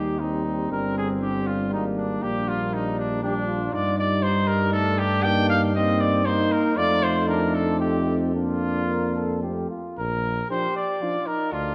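A clear, lightly vibrato trumpet carries the noble melody up front in this stately classical brass quintet excerpt at 118 BPM in a rubato 3/4, joined by a mellow flugelhorn second line, a dark trombone and a distant, roomy French horn in the background, and a warm, smooth tuba bass, all settling into Bb major from 3.7 s and resolving onto a Bb chord at 10.0 s within a reverberant concert hall, with trombone and horn dropping out at 11.2 s.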